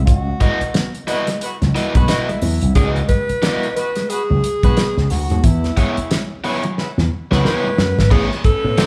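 A breathy, close-miked alto saxophone sings an intimate jazz-style melody with scooped notes and vibrato over a driving, swung 90 BPM funk groove in C# minor, carried by a bright slap bass with an envelope filter and a dry soul drum kit with a fat snare and tight kick, while an overdriven guitar with spring reverb and a dark, clean guitar riff with tube saturation in the background fill out the harmony, a tight horn section with octave doubling adds a second line from 1.1 seconds, a drum fill arrives at 6.8 seconds, and a lush symphonic string section enters at 8.1 seconds on an Amaj9 chord, the band captured live in one room with large studio reverb and vinyl crackle.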